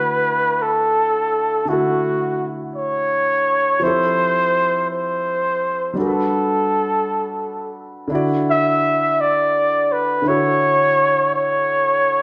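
A breathy flugelhorn sits up front and carries the melody, its whispered, soft-edged notes scooped into place and shaded with vibrato in an intimate, pop-style R&B manner. Beneath it a warm grand piano plays a 6/8 accompaniment with long sustain and audible action noise, moving from Dmaj9 through Fmaj9 and Gmaj9 and back to Dmaj9. The pair play live together in a large studio whose wet reverb lends a warm glow to this short passage cut from a longer piece.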